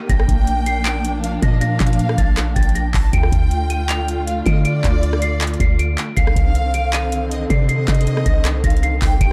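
A dark, warm mix set in a small room gives this melancholic, eerie trap fragment its shadowy character, cut from a longer piece. A worn celesta carries the melody high in its register, its bell-like, slightly out-of-tune tone sweet and airy, treated with tape echo. Beneath it, a distant symphonic string section holds lush bowed chords with focused vibrato, while a close studio violin section adds a smooth, even second line that also passes through tape echo. A booming analog drum machine sits up front in a half-time feel, its deep kick, metallic hi-hats, handclaps and rim clicks sounding as if re-recorded in a compact space, and a clean, sine-like 808-style bass with a fast attack drops to the lowest register and decays into a boomy rumble. Over roughly nine seconds the harmony moves from Bb to Dm at 3.1 seconds and then to Cmadd9 at 6.2 seconds.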